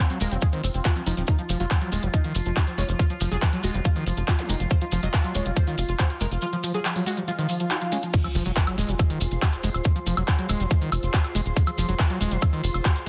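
A tight, punchy sequencer bass and an up-front electronic kick drive this alien, intense psychedelic trance excerpt at 140 BPM in F phrygian. A thick, detuned unison lead carries the melody through phaser and digital delay until 8.1 s, over a squelchy, distorted acid bass riff with tape echo, an overdriven techno kit of crash, handclaps, hi-hat and woodblock, grainy maracas, and a ring-modulated drone sustaining chords in the background, with sidechain pumping on the lead, drone and acid bass. A zap and a swell lead into the drop at 8.1 s, where a sub drop lands, and a cloudy, evolving granular pad enters at 8.9 s under light reverb and a dense, heavily limited master.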